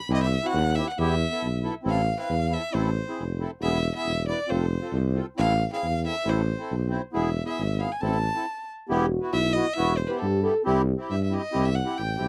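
Festive yet soulful, this klezmer excerpt moves at 136 BPM in a straight 2/4, starting in A harmonic minor and shifting to E harmonic minor at 8.9 seconds, just after a brief stop. An up-front violin carries the melody with a rich, focused, vibrato-laden bowed tone over sweet, reedy accordion accompaniment with light tremolo tuning, while a close-miked tuba anchors the bass with its own vibrato. A veiled, bucket-muted trombone adds a dark, soft-edged second line in the background from 8.9 to 11.0 seconds, all captured in a dry, close 1970s-style studio sound.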